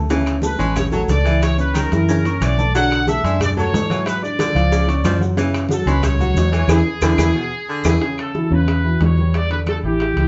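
Festive and danceable, this short salsa cut from a longer piece moves at a brisk 182 BPM in straight 4/4, centred on A major. A bright, punchy trumpet section carries the melody with vibrato and a tight, vintage pop-style sound, while a clear baritone saxophone with light vibrato and scooped notes plays a second line until about 7.9 seconds. Underneath, a dark, worn baby grand piano comps with a mellow, intimate tone and audible action noise, and an up-front, foam-muted electric bass adds a round, amped low end. Congas, tight high-tuned bongos, ringing metal-shelled timbales, grainy maracas and very quiet, woody claves sit in the background, with drum fills around 1.8 seconds and again from 6.7 seconds, where the band also hits an accent. The harmony moves through rich chords such as Dmaj7sus2, F#7b13 and C#7b9 before reaching A6 at 8.0 seconds and then Em7, all heard as a band playing live in one room with moderate reverb and a dusky, rolled-off top end.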